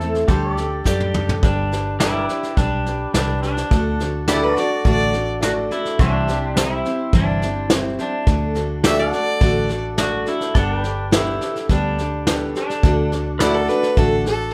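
Down-home and nostalgic, this short honky-tonk and classic country excerpt moves at 105 BPM in a straight 4/4 feel in G major. It opens with a brief clean electric guitar solo and a drum fill before settling into a steady progression through G, D, C and Gadd9 from 1.4 seconds. A twangy, slightly broken-up electric guitar through a small old amp carries the melody. A full-bodied picked dreadnought acoustic guitar, a smooth grand piano with long sustain, and a compressed pedal steel guitar holding sustained chords with volume swells fill out the accompaniment. A dark, round, foam-muted electric bass sits beneath a soft brush drum kit that sounds roomy and up front, with a tight kick and a rolled-off top. A clear, focused fiddle with light vibrato adds a second line in short bursts, first at 4.3 seconds, all within a rough home demo mix with light reverb.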